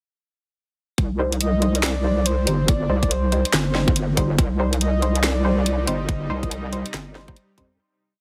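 A brooding, dark deep dubstep piece in C minor at 141 BPM with a swung half-time feel drops in at 1.0 seconds with an overdriven, up-front electronic kick, a garage kit of cracking snare, hi-hats and handclaps, and a heavy, saturated wobble bass sliding through long gliding notes. It is joined by muted off-beat dub chord stabs with dub echo, a soft, breathy flute-like lead wandering freely above, and from 4.9 seconds a tense, string-like drone deep in the background, all under a heavily compressed radio-like ambience before fading out from 5.5 seconds.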